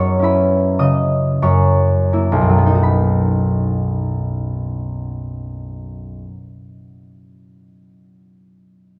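A concert harp, thumb-plucked and up front, carries this short excerpt of a classical solo harp piece alone, its acoustic tone warm and ringing across a range from B1 up to D#6. The mood is serene and graceful, moving in an unhurried triple metre with a free, rubato feel. In the opening phrase the playing slows down, resting on an F#7sus4 harmony that settles into F#7 at 1.4 seconds. At 2.8 seconds the music arrives on a B chord and begins a new section that lingers until the harp stops at 6.7 seconds. A generous recital hall reverb surrounds the instrument, letting each note bloom and hang in the air.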